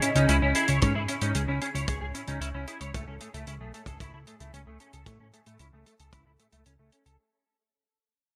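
A warm analog pad, a semi-hollow electric guitar playing arpeggios, a clean electric guitar riff and a hi-hat all sound together from the very start of this nostalgic, cinematic synthwave excerpt, moving at 113 BPM in a straight 4/4. The semi-hollow guitar is bright and compressed with a hollow-body tone, while the clean guitar's picked riff carries a filter sweep across the whole passage, and both guitars are coloured by ensemble chorus, a low-pass filter and delay. A fat, thick sawtooth bass enters at 0.2 seconds and sits up front, with the kick drum arriving at 0.8 seconds with a punchy, mid-forward thump that stops at 6.2 seconds. The smooth, mellow pad stays in the background with slow-attack sustained chords, chorus and sidechain pumping, while the dry hi-hat has a rolled-off top. The harmony moves from C#madd9 to Amaj7, all set in a lush hall reverb with a bright 1980s-style digital sheen as the whole passage fades out.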